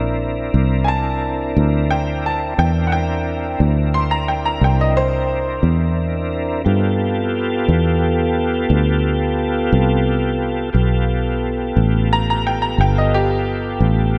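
A slow blues in 12/8 opens on a C9 chord, with a bright upright piano taking a soloing role from the first moment through to 14.2 seconds, its woody, short-sustained notes ringing in the upper register. Beneath it, a tonewheel organ holds sustained chords, its smooth, clean tone colored by chorus vibrato and a slow rotary speaker and placed up front. A fingered electric bass anchors the low end with a dark, round, foam-muted sound that sits direct and forward in the mix, carrying the most weight of the three parts. The tempo sits at 59 BPM in a straight feel, and the harmony moves to G9 at 6.7 seconds, giving the passage a soulful yet rollicking mood. A moderate cathedral reverb with a long 4.9-second tail soaks the whole mix, lending this short cut from a longer piece a dreamy, spacious atmosphere.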